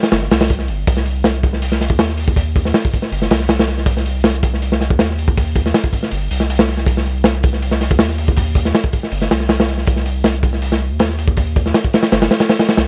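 A crunchy breakbeat kit opens this frenetic, atmospheric drum and bass and jungle drop at 160 BPM in C minor, its hi-hat, tight kick and medium-tuned snare sounding gritty, saturated and dark with a rolled-off top, placed up front in a small room. From 0.1 seconds a soft, round dub sub bass joins underneath, deep and sustained with a fast attack, moving between G1 and Eb2. The sound is dry and close, and the passage is cut from a longer piece tuned to A4 = 436 Hz.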